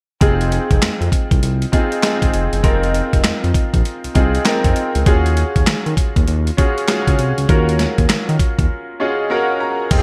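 A gritty, sampler-style drum kit drives this confident, slick new jack swing excerpt, its thumpy kick, medium-tuned snare, handclaps, hi-hat and crash cymbal sitting compressed and up front under gated reverb at 99 BPM with a swung sixteenth-note feel in Eb dorian. A smooth sawtooth-and-square synth bass with vibrato and long, mellow sustain holds the low end, while a brilliant, intimate grand piano with audible action noise and analog chorus plays accompaniment over Fm7 moving to Ebm11. At 8.7 seconds the groove breaks for a polished piano fill, all framed by light digital ambience and bright 1980s-style production.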